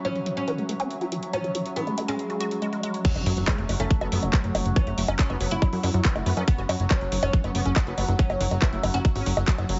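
A straight pulse drives this hypnotic, psychedelic trance passage, cut from a longer piece, with a garage drum kit of bongos, handclaps, crash cymbal and metallic hi-hats ticking from the start. At 3.0 seconds the drop arrives, marked by a very quiet electronic impact, as a tight, up-front electronic kick takes hold, and a punchy, funky analog bass with a fast, decaying pluck follows at 3.2 seconds. Over this, a deep, plectrum-plucked fretless oud carries the melody, its double strings treated with phaser, dub echo and sidechain pumping, while a woody, wave-folded pluck plays a riff through chorus and delay in the background. Behind them, a bright, detuned gated texture sustains chords, and a warbling, nostalgic tape-like pad adds lo-fi haze, both pumping with the kick. From 4.0 seconds, a faint, aggressive metallic wobble bass joins as a second line, saturated and high-passed with dub echo, and the whole mix has a heavily compressed, radio-like sound, dulled at the top, in a light reverb.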